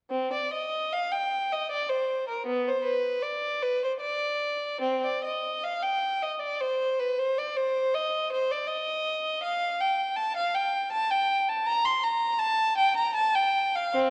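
A classical, baroque-style suite movement for unaccompanied violin, this short passage cut from a longer piece carries an introspective, solemn mood. It moves in 3/4 with a rubato feel at roughly 69-82 BPM, starting in C minor and turning to G minor from 9.4 seconds. A single bowed violin plays throughout, from 0.1 to 14.1 seconds, ranging from B3 to C6, its tone rich and smooth with vibrato, even in delivery and sitting up front. Moderate scoring-stage reverb with a 1.8-second decay surrounds the instrument. The sound carries the character of worn old cassette tape, with a warbly pitch drift lending it a faded, wavering quality.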